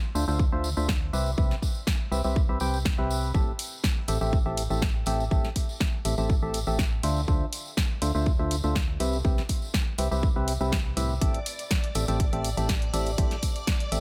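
A straight 4/4 groove at 122 BPM drives this bittersweet, soulful piano house excerpt in A minor, where a punchy, up-front electronic kick with studio reverb, a house kit's hi-hat and snare, and a distant tambourine underpin a hollow, nasal percussive organ stab riff with chorus, dub echo and sidechain pumping, a dark, decaying organ-like FM bass, and, from 11.2 s, shimmering vintage string-machine violin chords, all moving through Dm9, Cmaj7 and Am7 in a dry mix.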